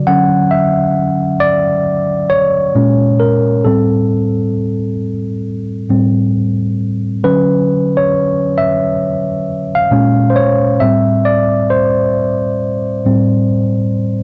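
A worn, slightly out-of-tune tine electric piano plays alone from the first moment to 14.2 seconds in this cosy, mellow hip hop fragment, sitting close and up front over a swung sixteenth-note feel. The piano cycles through Dmaj9, Bbm7 and Am7 twice across a range from A2 to F#5, coloured by cassette tape. Light reverb and a dry, gritty hardware sound give this slice of a longer piece an intimate, lo-fi character.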